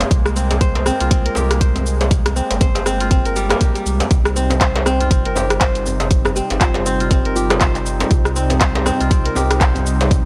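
A ringing, crisp kora opens this afro house excerpt with arpeggios over a smooth, detuned sawtooth pad holding sustained chords in the background, both breathing with sidechain pumping, the kora trailed by tape echo. A round sine sub bass sits deep underneath, while a house kit of handclaps, bright hats, rim click and shaker plays alongside a vintage, band-limited djembe played with hard hands. A punchy, up-front electronic kick arrives at 0.1 s and drives the 120 BPM groove in 4/4, swung at 58% on the sixteenths. In C minor, the harmony moves from Bb5 to Cm at 4.1 s, and the mood is hypnotic and spiritual. A woody, hollow kalimba with thumb plucks and tape echo drifts in from 4.6 s to 8.1 s, dark and smooth in the background. The sound is dry and gritty, as if tracked through hardware.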